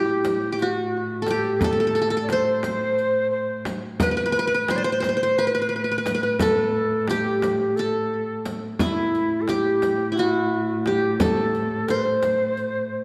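A fingerpicked qanun carries the melody up front, its triple strings bright-edged and trailed by tape echo, while a breathy, reedy ney weaves a vibrato-laden second line and a muted cello holds a veiled, bowed drone on A beneath them. This hypnotic, melancholic Turkish makam ensemble moves in 7/8 at 175 BPM in A makam huseyni. A deep frame drum struck with hard hands and a soft-handed riq with jingles in the background join at 0.2 seconds, all set in a reverberant recital hall with a dark production in this short cut from a longer piece.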